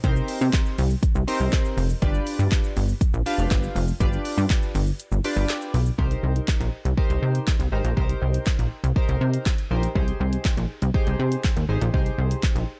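A straight dance-pop groove drives this short cut from a longer piece, with a confident yet bittersweet mood. The deep house drum kit sits up front, layering a deep kick, woody snare, handclaps, dark hi-hats and shaker into a polished electronic pulse. The kick drops out at 5.0 seconds, and the harmony moves from Cm7 and G7 to Abmaj7 as a new section opens at 6.0 seconds. Beneath it, a plucky analog bass with a fast, decaying filter attack and saturated edge plays a punchy, funky line that pumps with sidechain compression. Chorused retro synth keys add a glossy, bright pulse-wave accompaniment with a filter sweep, also pumping with the sidechain. The dark, dry production keeps the whole track close and intimate.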